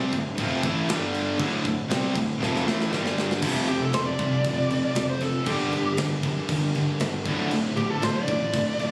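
Two picked high-gain guitars, one up front and one behind it, open this epic, heavy metal excerpt over a growly, fuzz-laden fingered bass, with a tight acoustic drum kit of kick, snare and crash joining at once and rolling into a fill at 2.4 seconds. At 3.4 seconds a double-tracked, overdriven guitar with a sludgy tone slips in behind the riff as the harmony moves on, and at 3.7 seconds a dark, smooth overdriven lead guitar takes a solo up front, trailed by tape echo. The whole performance sounds captured on a phone inside a club, with light reverb and compression.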